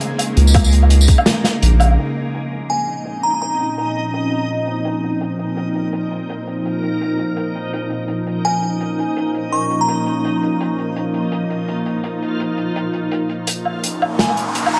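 A string-like bowed drone pumping with the sidechain, a reversed, dreamy swelling texture and a dark, rolled-off open jazz kit of crash, hi-hat, snare, tambourine and woodblock open this spacious, tense half-time drum and bass excerpt in Bb minor at 167 BPM, where a thick saturated sub bass and a hard-clipped overdriven electronic kick hit briefly in the opening drop, a glassy FM synth bell with chorus and dub echo surfaces from 2.7 seconds over the huge ambient reverb, and a filter sweep on the bell from 13.5 seconds plus an electronic riser from 13.8 seconds build toward the cut.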